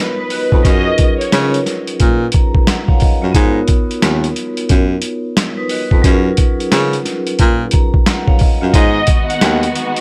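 This boom-bap hip-hop excerpt is tough and moody, with a swung 16th-note feel. A gritty, pitched-down sampler-style drum kit sits up front, with a thumpy kick, a medium-tuned snare, rim clicks and hi-hat, all sounding compressed and tape-warm as if re-recorded in a small room. A breathy baritone saxophone carries the bass line in a jazz style, using subtone, scooped notes and vibrato. Over the first section, a vibraphone played with medium hard mallets adds bright, ringing, airy chords with a slow motor vibrato, framed by a distant, woody violin section melody that is filtered and tape-echoed. At 8.7 seconds the violins return as a new section begins, joined by clear, focused string stabs with tape echo and a dark, lush string section holding sustained chords in the background. The harmony moves between a rootless G#m7 and F#maj7, and the whole piece sits in a light studio reverb.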